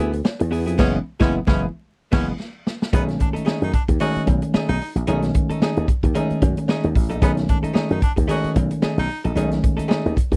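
A growly slap bass run through an envelope filter sits up front in this playful, strutting funk excerpt, moving between F#1 and F#2 at 112 BPM in 4/4 with a swung sixteenth-note feel in B mixolydian. An acoustic vintage drum kit with a medium-tuned snare, a punchy kick, crash and hi-hat, and a rolled-off top drives beside it, while a metallic, band-limited cowbell sits in the background. A dark, clean, picked hollow-body archtop guitar, compressed and amplified, supplies accompaniment, and a worn, slightly out-of-tune tine electric piano played through a combo amp adds mellow stabs. A bright baritone saxophone with vibrato enters at 0.8 seconds as a second line, alongside a band accent that runs until 2.9 seconds; a drum fill from 2.4 seconds leads the harmony from F#9sus4 to B13. The sound is dry and close in a 1970s studio manner, dusted with vinyl crackle and lossy compression artefacts.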